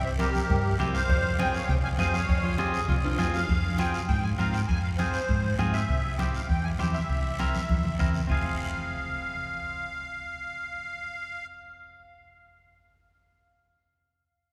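Soaked in a cathedral-like reverb with a faint mains hum, this fiery, passionate cumbia fragment puts a reedy, shimmering musette accordion up front on the melody, over a dark, round hollow-body short-scale fingered electric bass and a twangy, clean electric guitar. A soft-beater bombo, very quiet congas, a raspy guiro and distant, ringing cowbell and timbales drive the straight 4/4 groove, with drum fills at 3.0 and 7.7 seconds. A gritty, growling tenor saxophone surfaces briefly in the background as a second line at 2.4 seconds, and the remaining percussion stops at 8.4 seconds while the accordion, bass and guitar carry on.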